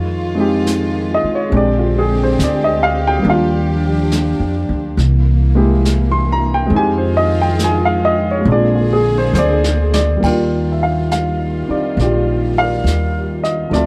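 A dry recording with little reverb frames this tender, late-night jazz ballad, cut from a longer piece and carried by a gentle swing. An up-front baby grand piano, intimate, with audible action noise and short sustain, accompanies over a woody, growly pizzicato upright bass, while a dark chamber string section holds soft-attack sul tasto chords with light vibrato. A distant, roomy brush kit with dark cymbals enters at 0.7 seconds and plays a fill from 9.3 to 10.2 seconds, leading into a new section.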